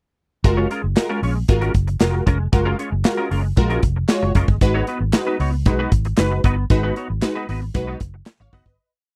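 Early-eighties boogie funk at 115 BPM in 4/4 with a straight feel, this short, complete piece in G# dorian has a slick, late-night mood, moving from F#maj9 to G#m7 at 4.6 seconds. A modern studio drum kit sits up front with a punchy kick, a medium-tuned snare layered with handclaps, and hi-hat driving a mid-tempo boogie beat. The vintage muted fingered electric bass is dark, round and foam-muted, playing a fat syncopated boogie line with chromatic approach notes. A funky polysynth with detuned sawtooth and pulse-wave tones, a filter sweep, a moving notch and chorus delivers syncopated drop2 chord stabs with short fills. Sitting lower in the mix, a clean, compressed semi-hollow electric guitar with ensemble chorus adds a choppy sixteenth-note riff. The sound is dry and close, like a 1970s-style studio recording, and the track fades out from 6.7 seconds to its end at 8.8.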